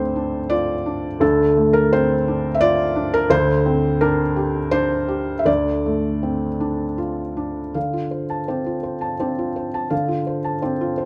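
Wistful and melancholic, this short excerpt of neoclassical minimalist piano in D minor drifts in a rubato 3/4 at roughly 76-87 BPM, with a solo felt-muted upright piano, soft, intimate and up front, spanning D2 to A5 through Dm7 and Csus2/D chords under light reverb, and shifting into a new section at 7.8 seconds.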